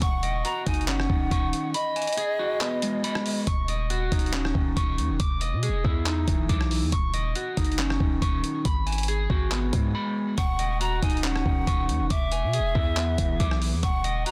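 A half-time 4/4 groove at 139 BPM drives this dark, brooding hip hop and trap excerpt in Eb phrygian, where gritty, pitched-down sampler-style boom bap drums with a thumpy kick, handclaps, hi-hat and rim click sit up front, with the kick muted from 1.7 s to 3.5 s, over a punchy, heavy sine-based 808 bass with a noise layer, while a twangy, slightly broken-up electric guitar plays fingered arpeggios with subtle chorus and digital delay and a breathy, reedy bamboo pan flute with vibrato and a soft chiff adds a delayed second line that drops out and returns at 10.4 s after a brief break at 9.9 s, all within a dry, dense and heavily limited modern mix.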